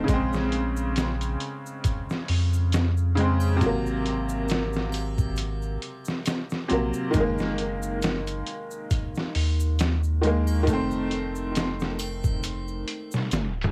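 Melancholic and brooding, this trip hop fragment rests on a worn, woody upright piano, slightly detuned and treated with tremolo and tape echo, moving through Bbm7, Ab7, Gb6 and F7 over a deep, round dub sub bass with tube saturation. A gritty, pitched-down sampler-style drum kit with a thumpy kick and medium-tuned snare sits up front in a lightly swung groove, while egg shaker and triangle linger in the background of a small acoustic room. The home-cassette sound carries light reverb, and a tape stop pulls everything down from 13.3 seconds.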